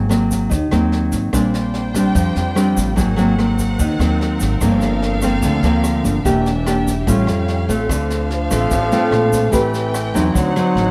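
Bossa nova, wistful and smooth, where an up-front fingerpicked nylon-string guitar with finger squeak and a woody, dark pizzicato upright bass carry the groove, a brushed kit with high-tuned snare and boomy kick plays beside a grainy tube shaker in the background, a lush bowed string section enters at 1.3 seconds with sustained chords, and a clear trombone with light vibrato joins at 7.9 seconds with a second line, all in light reverb.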